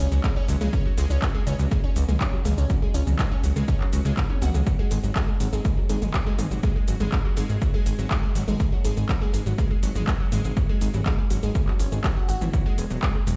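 Driving and melancholic, this melodic techno excerpt, cut from a longer piece, rides a punchy, tape-tinged electronic kick up front, alongside a layered techno kit of handclaps, smooth hi-hats, shaker and toms that breaks into a drum fill at 4.2 seconds. A fat, saturated sawtooth bass sits forward with sidechain pumping, while a round, detuned analog pluck spins arpeggios through chorus, delay and a moving notch and filter sweep. Dry on the instruments, the mix sounds as if played on a big system in a bare stone room.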